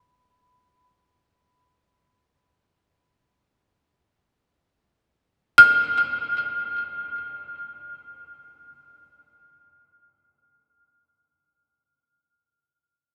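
A solo marimba struck with hard mallets carries this short cut from a longer piece of world meditative music, its padauk bars giving a woody, bright, percussive tone that sits up front. The mood is peaceful and calm, unfolding in free time with the tuning set at A4 = 442 Hz. The marimba stays high, between B5 and F6, and plays alone for the full 13.1 seconds. Tape echo trails each note, while a cathedral reverb with a 6.5-second decay places the instrument in a vast, echoing space. The result is an airy, spacious sound suited to meditation.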